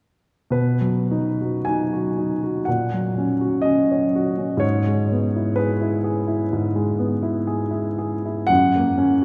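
A baby grand piano enters at 0.5 s and plays alone in this dreamy, serene fragment of a romantic classical nocturne in B major. The tempo drifts gently between 51 and 65 BPM in 4/4, with a rubato feel that lets the phrases breathe freely. The piano's tone is warm and natural, sitting up front while a long cathedral reverb blooms around it, as though heard in a church or concert hall. Its range spans from F#2 up to G#5, and the harmony moves from B through F#/A# and E/G# before settling on F# near 8.5 s. The fragment ends at 9.2 s, leaving the impression of a passage lifted from a longer piece.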